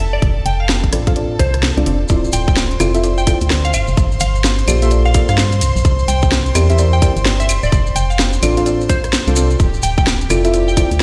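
A skippy two-step garage groove at 128 BPM with a 62% swing on the 16ths drives this moody D minor clip, cut from a longer piece. A tight, overdriven electronic kick sits up front beside a garage kit of cracking snare, hi-hat, rim click and claves, while a hollow, organ-like FM bass pumps under a bright chamber violin section holding sustained chords. Glassy, warbling wavetable plucks and deep, nasal chord stabs both carry chorus and dub echo over a progression from F6 through Dm9, Gm9 and C9, and after the kick drops out from 1.6 to 2.1 s, the drop lands at 2.1 s, where grainy maracas join in the background of a big, bare-room reverb.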